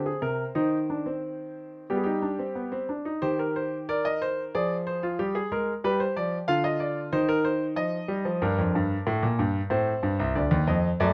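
Close, detailed miking and a light reverb put the grand piano up front, its natural tone carrying a short sustain that keeps each line distinct. This is a serious, driving classical excerpt cut from a longer piece: a baroque-style fugue in three parts, played by solo piano in a straight four-beat metre. The voices spread from deep bass notes up into the treble, giving the counterpoint a full, grounded body. The opening bars move quickly through a few chords before a new section begins at 3.2 seconds. The harmony there darkens with half-diminished colours, returning to the home chord before turning toward a minor chord and a final half-diminished sonority.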